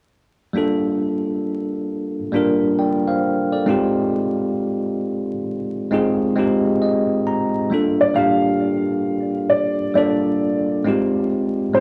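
Nostalgic and melancholic, this hip hop passage sits at a slow 67 BPM with a swung 16th-note feel in G phrygian, where a bell-like tine electric piano, filtered and up front, carries the accompaniment over Gm9 and Fm9 chords and adds a fill from 6.4 seconds. At 8.0 seconds a dark, woody upright piano enters with an intimate melody, its vintage tone softened by a low-pass filter and its action noise audible. The whole recording has a dry, gritty hardware character with vinyl crackle and a touch of small-room reverb, and it is cut from a longer piece.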